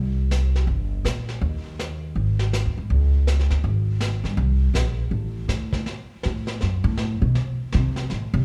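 A woody, growly pizzicato upright bass sits up front to open this playful, relaxed swing jazz excerpt, joined at 0.3 s by a muffled, gritty, lo-fi brush kit with a punchy kick and a rolled-off top, before the bass steps out for a solo at 5.9 s, all set in a moderate recital-hall reverb.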